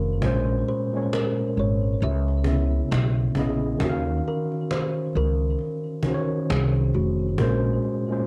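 A bright, ringing kalimba carries the melody in this hazy, nostalgic lo-fi hip hop excerpt, its thumbnail plucks close and dry, with a hollow-box resonance softened by a low-pass filter, cassette tape grain and tape echo. Beside it, a worn, slightly out-of-tune tine electric piano sits up front, lightly overdriven as if through built-in speakers, comping through a smoky cycle of Bbm9, Dbm9 and Ebm9 chords before returning to Bbm9. A growly pizzicato upright bass with steel strings anchors the low end up close and drops out at 7.8 seconds. From 0.2 seconds a distant cajon, struck with hard hands and carrying faint snares, adds a woody, large-room pulse with a lazy swing. The whole piece has the intimate, tape-softened feel of a home cassette recording in a small booth.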